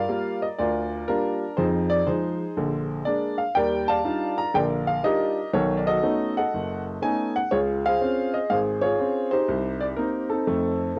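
A relaxed, swinging 4/4 pulse at 121 BPM carries this brief solo jazz passage cut from a longer piece, where a clear, woody upright piano with long sustain sits up front, its vintage cassette-tape character and light reverb giving a homey feel as it ranges from F#1 to Bb5 through chords like Gm7, Ebmaj9, B9 and Dbmaj7 before moving to Cm7 around 9.5 seconds and F7 around 10.5 seconds.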